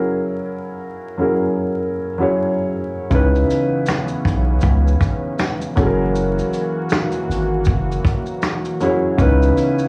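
Worn, warbling cassette tape with vinyl crackle and a small-room ambience colours this nostalgic, reflective lo-fi hip hop fragment, cut from a longer piece and swung on the sixteenths. A soft, felt-muted upright piano plays an F#7 chord alone, up front and mellow through cassette tape, low-pass filter and plate reverb, until 3.1 seconds, when a deep saturated sub bass, a vintage brush kit with finger snaps, hi-hat, kick, shaker and a medium-tuned snare, and a quieter detuned analog pad with lush chorus and a slow attack enter together. The brushed drums sit close with a rolled-off top, while the thick, sustained sine bass lies beneath the smooth, vintage chords of the pad.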